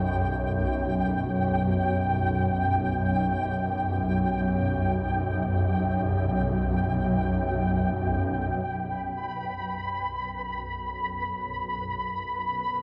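A swarming, detuned drone built from sine and sawtooth tones with ring modulation sits low and up front in this unsettling, desolate dark ambient excerpt in free time, joined throughout by a mellow, flickering grainy texture high above, both bathed in a cavernous cathedral reverb and the warbly pitch drift of worn cassette tape, with the harmony resting on Gmaj7/B and a new section arriving at 8.7 seconds.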